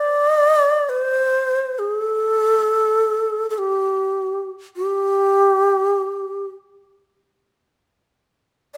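In free time, a lone end-blown bamboo shakuhachi carries this austere, calm piece of Japanese traditional chamber music, playing from 0.0 to 8.8 seconds within a compact range from G4 to D5. The tone is breathy and full of air, with a crisp, chiffy attack, lifted highs and expressive vibrato. It sits up front in light reverb, in a brief passage cut from a longer work.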